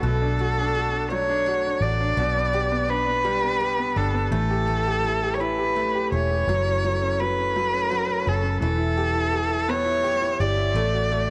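A home cassette recording with a light, small-room reverb gives this short cut from a longer six-eight pop ballad a heartfelt and romantic feel. Up front, a single bowed cello carries the melody between A4 and D5 with vibrato and a nasal, boxy focus, its line colored by cassette tape and an analog delay. A bright concert grand piano, also run through cassette tape, accompanies in a brilliant, polished voice with deep bass and short sustain. A picked steel-string acoustic guitar plays very quiet, full-bodied jumbo arpeggios, while a vintage foam-muted fingered electric bass sits low with a dark, round, punchy amped tone. All four parts play from 0.0 to 11.3 seconds over a gently moving progression that runs from Bm7 through G/B, A7, F#m7 and Em before settling on D/A.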